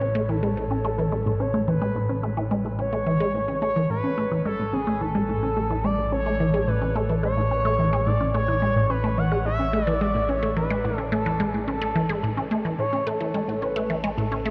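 A bright, squelchy blip pluck sits up front, repeating a resonant riff between A2 and C#4, its detuned sawtooth and triangle tones thickened by a noise layer and a sub octave, with a moving notch, phaser and delay. This is ambient, sequencer-driven space music at 108 BPM in a straight 4/4, in A major and tuned to A4 = 439 Hz, with an expansive, luminous mood. Above it, an expressive portamento lead sings a smooth melody from G#4 to F#5, its mellow sawtooth-and-triangle voice shaped by vibrato, chorus and delay. Underneath, a fat analog bass holds A1 with a thick, saturated, wave-folded blend of sawtooth, square and sine, sustained under a filter sweep. All three parts play throughout the 14.5-second passage, which sits on a single A chord and is cut from a longer piece. A huge, wet ambient reverb with a 7.3-second decay surrounds the whole sound.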